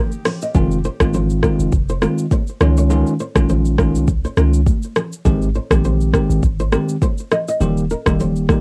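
A deep, boomy 808-style bass and a bell-like tine electric piano sit up front in this hypnotic, mellow afrobeats fragment, over an overdriven electronic drum kit with a deep kick, metallic hi-hats, rim clicks and shaker, while a small fingerpicked nylon-string guitar riff with tape echo, faint damped high-tuned congas, and a very quiet detuned sawtooth pad heard only in the first 0.5 seconds all share a lightly reverberant, homemade cassette sound.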